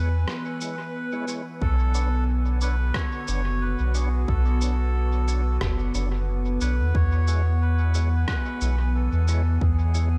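Set in light reverb and a digital ambience, this meditative ambient dub excerpt opens on a warbling, lo-fi pad with slow-attack sustained chords and a round, up-front sub bass, beneath a reedy, breathy melodica carrying the melody through dub echo. A fat, percussive tonewheel organ with key click and slow rotary speaker adds stabs in the background. Muffled, pitched-down rim clicks and cabasa enter at 0.3 seconds during a brief break, and a deep, layered, overdriven electronic kick arrives at 1.6 seconds as the harmony moves from E6 to Bmadd9, returning to E6 at 6.9 seconds.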